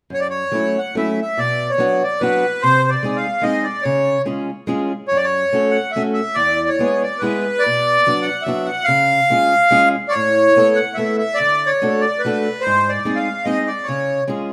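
A lilting 3/4 pulse at 144 BPM, lightly swung on the eighths and pulled about with rubato, drives this short cut from a longer musette waltz in F# minor, whirling and nostalgic in mood. Up front, a reedy accordion carries the melody between B4 and F#5, its slow beating giving the tone an airy shimmer. A fingerpicked steel-string acoustic guitar in a boxy parlour voice supplies the accompaniment from E2 to A4, also up front, with finger squeak adding intimacy. The harmony moves through F#m7, Bm and C#, later passing through Asus2 and D before turning on G# and landing on C# at 13.9 seconds. Both instruments play from 0.1 seconds, the accordion stopping at 14.2 seconds as the guitar rings on briefly, all set in a moderate recital-hall reverb.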